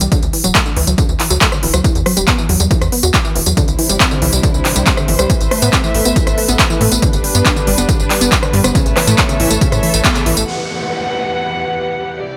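Uplifting trance at 139 BPM in E minor, this excerpt from a longer piece feels euphoric and bittersweet, riding a straight 4/4 pulse. A punchy, overdriven electronic kick joins a layered big-room kit with crisp hats, handclaps, rim click and tambourine that sits up front, and both are re-recorded in a large room. Beneath them a tight, driving sequencer bass blends sawtooth, square and sine tones with wave-folding and a moving notch, pumping against the kick. A lush, detuned unison pluck spins arpeggios through delay and a filter sweep. At 3.6 seconds a dark, intimate chamber string section enters, bowed sul tasto with light vibrato and a soft attack, carrying sustained chords that move from Cadd9 through Amadd9, G and Aadd9 under a touch of vintage 12-bit sampler grit. After a band accent at 10.0 seconds, the beat gives way at 10.5 seconds to an electronic downlifter and the lingering strings on Emadd9, all held in light reverb.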